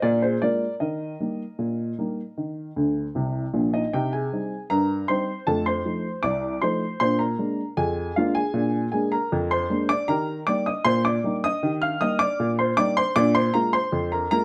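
Playful and jaunty, this short ragtime passage for solo upright piano moves at a relaxed 78 BPM in a straight 2/4, set in E-flat major. The piano sits up front with a worn, woody tone and a slightly detuned character, spanning from deep in the bass up into the high treble. A moderate studio reverb gives the instrument a modest sense of room around it. The opening strain turns on a dominant seventh before resolving home, and a short piano fill from 2.8 to 3.9 seconds leads into a second strain. That later passage travels through C minor and F7 before circling back through B-flat seventh and E-flat, and the recording ends at 14.4 seconds as a fragment cut from a longer piece.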